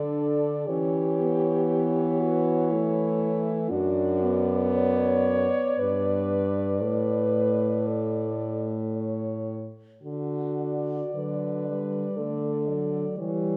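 Serene and lyrical, this classical excerpt for horn quartet moves in a rubato 3/4 at 52-61 BPM in D major, with a mellow French horn carrying the high melody with light vibrato over a dark, punchy second horn, a third horn's accompaniment and a roomy bass horn, all four sounding together for the full 13.6 seconds in the moderate reverb of a recital hall.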